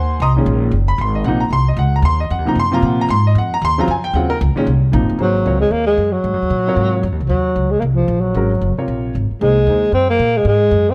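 A breathy alto saxophone enters at 5.2 seconds with a whispered, soft-attack solo full of scooped notes and vibrato, giving this hypnotic, searching modal jazz excerpt in A-flat mixolydian its mellow voice. Before that, a concert grand piano with deep bass and audible action noise comps on an Ab9 chord until 9.8 seconds, while a woody, growly pizzicato upright bass carries on to the end. The fast 228 BPM swing is captured by close, detailed microphones with light reverb, keeping all three instruments up front.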